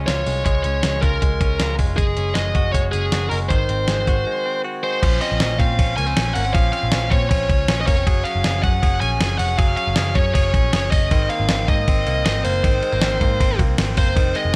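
A dusty, sampler-style drum kit sits up front in this bittersweet, wistful slice of jangly indie pop, its thumpy kick and fat snare carrying a gritty, compressed sound that was re-recorded in a large room, with crash, ride and hi-hat filling out the beat at 158 BPM in a straight 4/4. Over it, a dark, high-gain lead guitar carries the melody, distorted and pushed forward in the mix between Ab4 and Ab5. Beneath, a bright, twangy clean electric guitar, recorded direct, picks arpeggios, while a vintage foam-muted bass adds a round, punchy low end from F1 to Bb2. The harmony in Bb minor moves from Bbm7 through Gbsus2 to Ab7, and a brief break at 4.3 seconds leads into a second section at 5.0 seconds built on Bbmadd9, Gbsus2 and Abadd9. The overall sound is dry, with little reverb, and the passage is cut from a longer piece.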